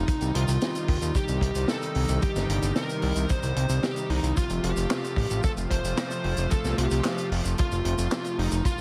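Nostalgic and cinematic, this short synthwave cut moves at 112 BPM in a straight 4/4, shifting from C minor to F at 4.4 seconds. A dark, picked overdriven electric guitar carries the melody through a delay over a bright, detuned sawtooth pad, soft in attack and treated with chorus, tremolo and sidechain pumping, while a fat, up-front sawtooth bass with a filter sweep pumps beneath them. From 0.1 seconds a punchy acoustic kick and a vintage kit with a high-tuned snare, handclaps, hi-hat and shaker add a mellow, rolled-off drive, all set in light reverb and studio ambience.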